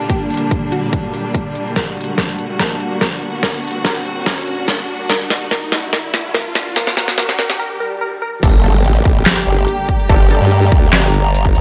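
A half-time 4/4 groove at 144 BPM drives this menacing, chaotic heavy wobble dubstep excerpt in G harmonic minor: lush, bowed symphonic strings pumping under a sidechain and a lo-fi, warbling pad with phaser and chorus hold a Gmadd9 chord, while a bright, detuned unison pluck with tape echo and a filter sweep carries the melody over a punchy layered electronic kick and an up-front, tape-tinged kit of deep snare, crisp hats, handclaps, shaker and crash cymbal; background risers and swells build through a drum fill until a break at 7.6 seconds gives way to the drop at 8.4 seconds, where a compressed, overdriven formant-sweep wobble bass and a nasal orchestra-hit-like synth stab arrive with an electronic impact.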